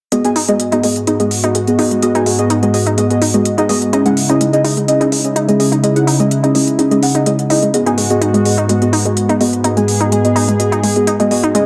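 This progressive house excerpt opens at 0.1 s with all four parts sounding together: a smooth, detuned sawtooth pad holding sustained chords, glassy wavetable pluck arpeggios, deep mellow chord stabs, and a crisp electronic hi-hat. Set at 126 BPM in a straight 4/4 in G# minor, the mood is bittersweet and emotional, moving from G#m7 to C#madd9 at 3.9 s and back to G#m7 at 7.7 s. The pad sits up front with a soft attack and chorus, while the stabs, also up front, sound dark and wave-folded, with fast attacks that decay into chorus and tape echo. Above them, the crystalline pluck carries a noise layer and a filter sweep, its short, bright notes thickened by chorus and tape echo. The layered hats add a tape-warm touch, and a moderate digital room reverb gives the whole a sense of space until the pad ends at 11.7 s.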